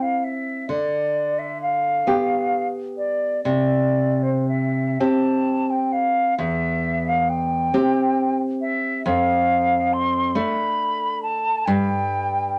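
A wet club reverb with a 0.5-second decay surrounds this cut from a longer romantic duo, with a mellow concert flute and a nylon-string guitar both sitting up front. In a rubato 6/8 at roughly 37-47 BPM in dotted quarters, the flute sings a serene, tender melody from C5 to C6 with a pure tone, vibrato and a crisp attack. The fingerpicked classical guitar accompanies from E2 to G4 through C, G7/D, C5, C/E and Dm/F in C major, tuned to A4 = 445 Hz.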